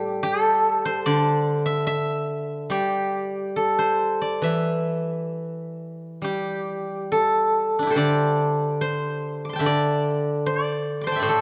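A steel-string zither plays alone from the first moment, its silvery, ringing tone sitting up front as fingerpicks sound notes across a broad span from low to high. The music is Chinese traditional solo plucking, contemplative and full of longing, moving in a free rubato over a four-beat pulse. A moderate concert-hall reverb gives the strings a spacious bloom through this 11.4-second fragment of a longer piece.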